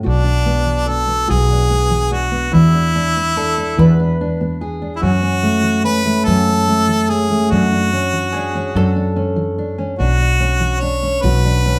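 A live sound with wet studio reverb gives this short excerpt of acoustic folk an intimate, haunting air, as a small band plays together in one room. Set in B dorian at a slow 48 beats per minute in a straight 6/8, it moves through Bm, E7, F#m and Dmaj7/F# before settling on Bmadd9. A dark, full-bodied dreadnought steel-string guitar is fingerpicked throughout, with audible finger squeak, while a woody fretless electric bass adds a round, hollow-body tone that is direct and amped. Up front, a clear harmonica carries the solo melody from 0.1 seconds, with a soft attack, light vibrato and a classical poise. A mellow bowl-back mandolin, picked on its double strings, slips in quietly at 3.4 seconds with a modest second line and drops out at 9.8 seconds.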